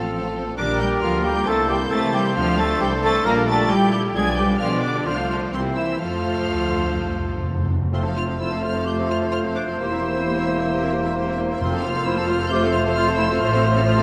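A quick classical-period movement for symphony orchestra in F major, spirited and cheerful, moving at 132 BPM in 4/4 with a rubato feel, cut from a longer piece. A lush violin section carries the melody high above, rich with vibrato and a soft attack, while a second violin line, an airy flute ensemble and a distant, mellow solo clarinet add supporting lines. Violas with expressive portamento fill the accompaniment, a French horn section holds smooth sustained chords, and a solo trumpet adds warm stabs over cellos and a clear, even double bass section underneath. Round, close timpani on soft mallets enter at 6.0 seconds with a fill and return briefly near the end, and a warm solo bassoon joins the accompaniment at 7.9 seconds as the second section begins. The harmony moves through chords like Gm/Bb, C7, Dm7 and Bdim7 before settling on F, all set in the generous reverb of a scoring stage.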